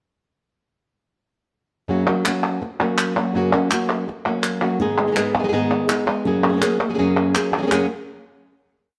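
Proud and festive, this brief flamenco piece in F# major moves at a brisk 165 BPM in a straight 4/4, with two guitars entering at 1.9 seconds and crisp palmas hand claps joining just after, at 2.1 seconds. Up front, a fresh-stringed flamenco guitar drives the accompaniment with rasgueado strumming and taps on the top. Behind it, a second, thumb-plucked guitar adds stabs that keep the cycle, its finger squeaks audible, while the claps mark the cycle before everything settles on a final F#add9 chord at 7.7 seconds, ringing in a moderate stone-room reverb.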